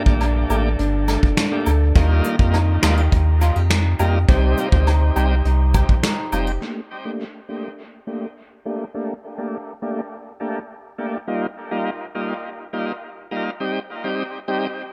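Dancehall at 103 BPM in G minor, bouncy and sultry, where a bright, shouting tonewheel organ with slow rotary speaker, key click and dub echo carries the chords Gmadd9, Ebadd9 and Cm over fingerpicked flamenco guitar arpeggios with audible finger squeak, a deep, round sine sub bass up front, a soft brush drum kit with tight kick, finger snaps, rim click and dub echo, and saturated woodblock and cabasa in the background, before guitar, bass, drums and percussion stop near 6.6 seconds and the organ carries on alone under a filter sweep in this echo-heavy, dry-sounding excerpt from a longer piece.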